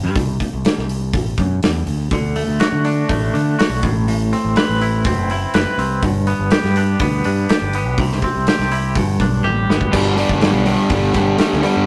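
Brooding, angsty quiet-loud alternative rock at 123 BPM, where a growling overdriven fingered bass and a loose, pumping small-room drum kit carry twangy, clean tremolo guitar arpeggios over chords moving from C through D, Amadd9 and G until a drum fill at 9.4 seconds tips into a louder section at 9.9 seconds, as a compressed fuzz guitar and a warm overdriven guitar play a G5 riff, all in a rough rehearsal-room recording with tube saturation and short reverb, cut from a longer piece.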